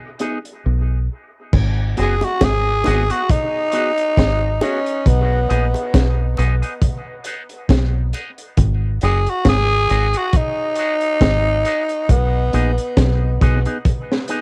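Dub reggae with a heavy, deep mood, this excerpt from a longer piece moves at an unhurried pace with a light swing, recorded at home on cassette with a touch of reverb. A crunchy breakbeat kit sits up front with a punchy kick, high-tuned snare and dark cymbals, its saturated, tape-worn sound rolled off at the top, though it drops out briefly near the start. Beneath it, a foam-muted fingered bass plays round and low, while an envelope-filtered electric guitar adds bright, twangy, picked accompaniment soaked in dub echo and cassette tape. From 2.0 s a raspy, growling tenor saxophone carries the melody up front with light vibrato and its own dub echo, over chords that move between G#m7 and B6. Tight, high-tuned bongos tick very quietly in the background until 8.4 s, and a filter sweep runs through much of the passage.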